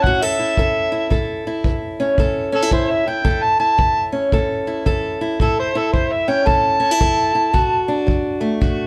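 Moderate studio reverb gives this live, one-room take a natural space as a gritty, swaggering acoustic country blues excerpt swings at 112 BPM in A mixolydian, with an amplified, overdriven harmonica up front playing a jazz-style solo full of light vibrato, tongue slaps and scooped notes over a bright, boxy fingerpicked parlour steel-string guitar on fresh strings and a dark, punchy brushed kick drum, the chords moving from A to D at 7.5 seconds.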